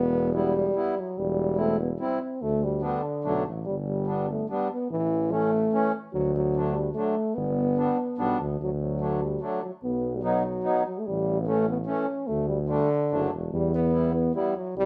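A warm euphonium with light vibrato carries the melody in this bouncy, festive alpine folk dance in 3/4 at 146 BPM in G major, over a punchy, roomy tuba bass line and a reedy, airy accordion accompaniment that enters at 0.3 seconds, all captured as a band playing live in one room with light reverb in a brief section cut from a longer piece.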